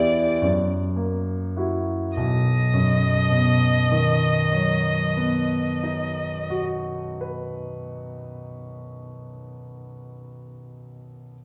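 A rich, bowed violin and a bright concert grand piano open this melancholic, yearning fragment of a romantic classical duo. It moves in a rubato 6/8 at about 34 BPM and slows through the first 2.2 seconds over an F#7 chord that settles onto B. The violin, a single player, sings with vibrato and portamento, while the piano's brilliant tone, deep bass and long sustain continue after the violin stops at 6.6 seconds, all heard from further back in a wet recital hall.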